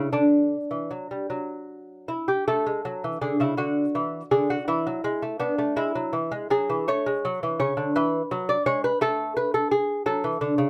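A mellow, delicate lute sits up front in a light reverb, its gut and double strings, some doubled at the octave, giving a soft tone to this short cut from a longer classical, baroque-style dance in A major. Fingerpicked alone in a slow, rubato 6/8 of about 50-58 dotted-quarter beats per minute, the solo lute flows serenely through D, A and E harmonies across its range from C#3 to D5. A brief opening phrase gives way at 2.5 seconds to a repeat of the same material, which settles into a chordless passage around 9.0 seconds before the cut ends at 10.7 seconds.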